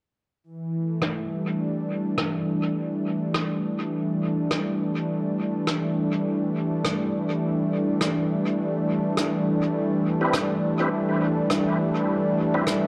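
Ambient dub at 103 BPM in 4/4 with a gentle 16th-note swing, this hazy, spacious excerpt rests on an up-front, detuned sawtooth analog pad holding smooth sustained chords with chorus over a single A7(no3) harmony, while a natural acoustic rim click played with brushes keeps time through low-pass filtering and dub echo, and a clean tonewheel organ with key click, chorus vibrato and fast rotary speaker adds echoing stabs from 10.2 s, all set in a moderate spring reverb.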